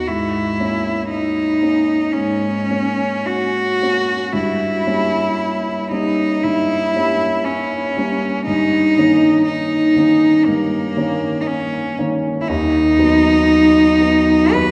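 A bowed cello and a baby grand piano begin together in this melancholic, elegiac romantic classical duo, cut from a longer piece. A single cellist carries the melody in a rich, smooth voice with vibrato, close and up front and sitting above the accompaniment. The piano supports it from the lower register with a dark, mellow tone and long sustain. The tempo moves freely between 51 and 61 BPM in 4/4, with a rubato feel. The harmony drifts through A#m7b5/G#, Gdim7 and D#7/G before settling on B/D#, while a cathedral reverb with a 4.0-second decay bathes the pair in a church or concert-hall space.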